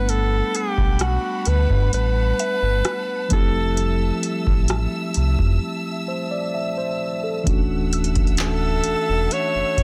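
Romantic and tender, this slow contemporary R&B excerpt at 65 BPM in D major sets a breathy, up-front alto saxophone melody with light vibrato and delay over a mellow tine electric piano, lush bowed strings and a deep sine sub bass with octave. A booming analog drum machine with a deep kick, metallic hi-hats, handclaps and rim clicks drives the groove, while a very quiet, woody mallet-like synth pluck with chorus adds a faint percussive texture. The harmony moves from Gmaj9 to Fmaj9 at 3.3 seconds, passes through a break at 5.6 seconds, and settles on Dmaj9 at 7.5 seconds, all in a dry, dense and heavily limited modern mix.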